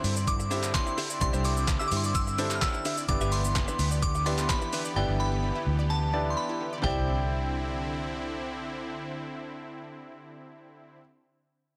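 A blown-out, overdriven mix with light digital ambience carries this carefree, summery dance-pop excerpt at 128 BPM in C major, where a glassy FM synth bell sings the melody over a clear concert grand piano, a smooth detuned supersaw, a compressed clean electric guitar riff, a dark foam-muted fingered bass, and a chorused analog pluck arpeggio, all riding sidechain pumping except the bell and guitar, while a thumpy, tape-toned 8-bit drum machine with claps, shaker and toms drops out at 5.0 seconds and stops by 7.0.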